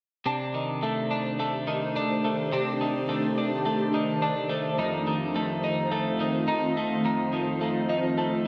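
In a straight 4/4 at 106 BPM, this hazy, melancholic dream pop excerpt sits in C dorian, tuned slightly sharp to A4 = 441 Hz. A clean, picked twelve-string electric guitar opens at 0.3 s with arpeggios, its compressed tone placed up front and colored by subtle chorus and tape echo. At 1.2 s an ethereal, airy pad enters with sustained chords, built from detuned sawtooth and triangle voices in unison with a noise layer, a slow attack and a long release, and treated with ensemble chorus, built-in reverb and phaser. The harmony moves from Cm69 to F7 at 4.8 s. A wet spring reverb and digital ambience give the whole mix an echo-heavy, floating haze.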